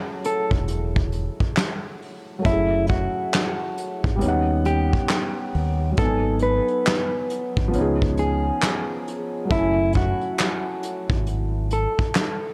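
A felt-muted upright piano opens this nostalgic, hazy lo-fi hip hop excerpt, its soft, intimate chords carrying audible action noise through cassette tape coloring and a low-pass filter, as a vintage brush drum kit with punchy kick, handclaps, hi-hat and a medium-tuned snare, its sound dark with a rolled-off top, settles into a swung groove up front. A mellow electric guitar carries the clean, fingered melody through spring reverb and tape echo, while a deep dub fingered electric bass sits round and punchy beneath the F#m7 to C#7 changes. Very quiet, close and dry finger snaps enter at 1.6 s, all within a light room reverb.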